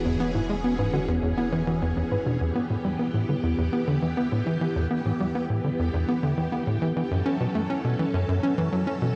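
Expansive and cosmic, this short cut of sequencer-driven ambient space music rides a tight, punchy sawtooth sequencer bass riff up front, under swirling, bright string-machine chords drenched in ensemble chorus and phaser, a gentle, tine-like FM pluck playing arpeggios with tape echo in the background, and a deep, round analog bass that holds E1 only until 2.4 seconds, all bathed in a huge reverb and the warbling pitch drift of worn cassette tape.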